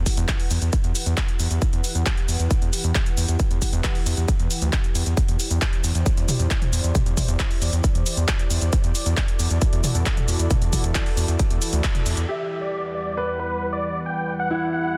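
Driving and soaring, this uplifting trance excerpt moves at 135 BPM in E minor, with a lush, detuned pad sustaining chords from Emadd9 through Cadd9/E and Dadd9 under a filter sweep, while a gritty, saturated synth bass pumps up front and a punchy electronic kick hits up front beside a layered dance kit of handclaps, filtered hi-hat, shaker and toms. By 12.3 seconds the kick, bass and drums have dropped away, and a huge, euphoric supersaw lead takes the melody with digital delay and its own filter sweep, joined by a concert grand piano whose second line carries dub echo. The master is dense and heavily limited, with little reverb.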